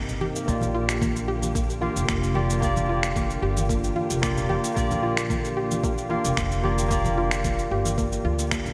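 A straight 4/4 pulse at 112 BPM carries this wistful sunset chillout fragment, cut from a longer piece and tuned to A4 = 435 Hz, with gritty, overdriven electronic shaker and finger snaps arriving at 0.1 seconds under a gated reverb, joined by a thumpy, sampler-style electronic kick at 0.5 seconds. Congas sit softly in the background, while a woody, growly pizzicato upright bass holds down the low end from the opening. Up front, a bright, barky tine electric piano plays the accompaniment through a low-pass filter and digital delay, leaning on a Bb6 chord. Behind it, a silky vintage string machine sustains chords with ensemble chorus, and a dark, round pluck traces arpeggios through chorus and delay. The whole fragment sits in a lush hall reverb with a glossy 1980s-style digital sheen.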